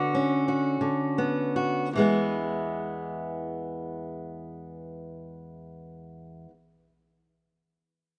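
Warm and nostalgic, this brief folk fragment in a straight 6/8 features a single fingerpicked steel-string acoustic guitar, placed up front with audible finger squeak, that slows over the first 1.9 seconds on a Bmadd9/D before settling onto E, all bathed in a lush plate reverb within a rough, homespun demo mix.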